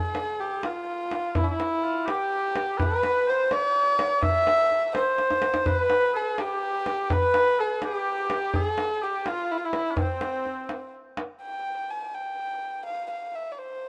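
A moderate plate reverb wraps this short Persian modal ensemble piece, cut from a longer work, in a festive, warm mood and a straight 6/8. A dark, boxy kamancheh carries the melody up front and intimate, with light vibrato, soft attacks, portamento and an airy bowed tone, while a mellow, distant oboe plays a classical-style second line. A deep, compressed and saturated tombak, struck with hard hands, adds a fill at 5.2 seconds; the oboe drops out at 10.9 seconds and the drum at 11.3 seconds, leaving the kamancheh alone into a new section.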